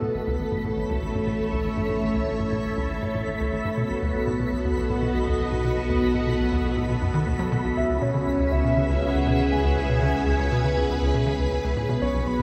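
A lush, vintage string machine sits up front with full sustained chords drenched in ensemble chorus and shimmer reverb, opening this luminous, cosmic excerpt of ambient space music at 120 BPM in straight 4/4 over a progression from A through B7 to C#m7. Beneath it, a tight, punchy sawtooth sequencer bass drives a plucky riff through lush chorus, tape echo and a filter sweep, while a round sine sub bass hums deep in the background and a twinkling granular texture sparkles high above. At 7.8 seconds a dark, retro pulse-width lead takes up the melody with vibrato, chorus, cassette tape colour and echo, all within a dreamy mix soaked in a huge reverb.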